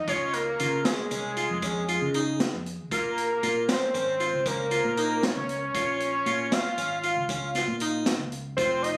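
A fat analog synth lead carries the melody from the very start of this cut from a longer progressive instrumental. Its detuned blend of sawtooth, square and triangle waves sits over a sub octave, roughened by ring modulation and wave folding, with a fast attack, sustained notes, vibrato, portamento, chorus and delay. A mellow fretless electric bass enters alongside it at 0.0 seconds, dark, round and punchy. At 0.1 seconds a bright, plucked French-style harpsichord with one set of strings joins up front with arpeggios, as does an open acoustic jazz kit with a boomy kick, a medium-tuned snare and hi-hat. The band drives through an uneven 11/8 metre with a straight feel and an intricate character, moving from Dbadd9 to Bbm. The sound has the natural ambience of a studio room with light reverb, as if captured on a phone in the space.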